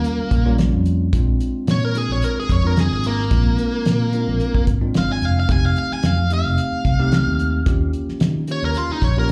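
A straight-eighth groove in 4/4 with a faint sixteenth-note swing drives this swaggering, gritty soul blues, cut from a longer piece. A cloth-damped drum kit sets a thuddy, dark pulse of hi-hat, tight kick and fat snare with a rolled-off top, while a vintage foam-muted fingered electric bass sits up front, round and punchy through its amp. Over them, a smooth overdriven lead guitar takes a bright, picked solo for the full 9.3 seconds, with a slapback echo. A bell-like tine electric piano fills in clean, direct accompaniment, also carrying slapback echo. The chords move from a rootless Eb9 to Bb9, then F9 at 5.5 seconds and back to Eb9, all heard as a live gig through the venue's PA with only a touch of club reverb.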